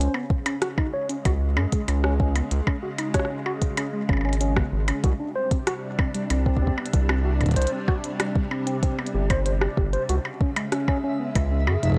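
Glitchy and intricate, this IDM excerpt sets a mellow tine electric piano playing arpeggios through a low-pass filter sweep and tape echo over silky string-machine chords colored by phaser and ensemble chorus. A round, deep analog bass and a soft electronic kick, entering at 0.3 seconds, sit up front, while a glitchy kit adds clicky hi-hats, percussion blips and rim clicks in small room reverb. A twinkling, sparkling granular texture appears at 10.6 seconds, and the recording carries a worn cassette-tape character with warbly pitch drift, light reverb and digital ambience.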